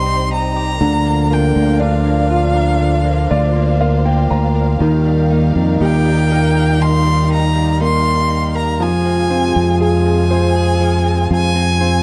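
Violin, French horn section, grand piano, string section, clean electric guitar and fingered electric bass all sound from the opening moment of this emotional, heartfelt pop ballad, cut from a longer piece. A focused solo violin carries the bowed melody with vibrato, over a mellow, loose horn section's second line, a clear, intimate piano with audible action noise that plays a fill from 2.8 to 4.8 seconds, lush sustained strings, and compressed, direct-recorded guitar arpeggios tucked in the background. A round, punchy bass sits up front in a dry, dark mix as the harmony moves through Cm, Bb/D, Ebadd9 and Fm.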